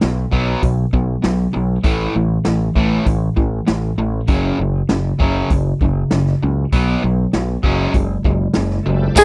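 A swaggering, driving classic rock excerpt opens at 98 BPM in a straight 4/4, with two overdriven semi-hollow guitars playing a picked riff from the start, one bright and the other set further back with a rounder hollow-body tone. A growling fingered electric bass sits up front, its overdrive giving the low end a bright, gritty bite, while a vintage acoustic drum kit plays kick, snare, hi-hat and crash with a punchy kick, a medium-tuned snare and a rolled-off top. The chords move from B5 to A5, F#5 and back to B5 before landing on F#sus2. Near the close, at 8.8 seconds, a bright tonewheel organ adds shouting sustained chords colored by light overdrive, chorus vibrato and a slow rotary speaker. At 9.2 seconds a dark octave-fuzz lead guitar, a compressed, slightly broken-up second lead guitar up front and a jingly tambourine all arrive together as the piece cuts off. The sound is dry and close, like a 1970s studio session with only a touch of reverb.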